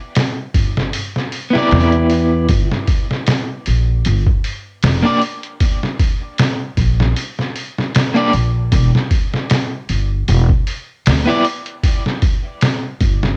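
Brooding and dark, this short trip hop cut moves at a slow 77 BPM in 4/4 with a light 16th-note swing. A sampler-style drum kit of kick, snare and hi-hat arrives first at 0.2 seconds, compressed, pitched down and muffled, with a thumpy kick, a medium-tuned snare and a cassette-tape grit from being re-recorded in a small room. An upright bass follows at 0.5 seconds, its pizzicato steel strings sounding woody and warm as it sits up front in a low register. From 1.5 to 11.4 seconds an electric guitar at the edge of break-up plays picked accompaniment, slightly broken-up and coloured by tremolo, tape echo and cassette saturation. The harmony moves from Em7 to Gm and back to Em7, all within a single section, and a digital ambience surrounds the home cassette recording.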